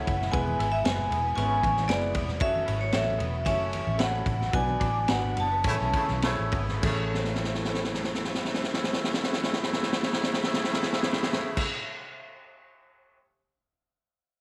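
A ringing, metallic vibraphone carries the melody with slapback echo in this joyful, 1960s-style uptempo soul excerpt, backed by a punchy vintage drum kit with dark cymbals, a round, foam-muted electric bass, a saturated grand piano, a reedy organ on slow rotary, a twangy guitar riff in the background and very quiet low-tuned congas. The band slows and hits an accent together, and in the middle of that accent a tight horn section enters on a second line at 5.7 seconds, just before the vibraphone drops out at 6.2 seconds. From 7.1 seconds a drum fill runs under the horns, all in a small echo-chamber ambience.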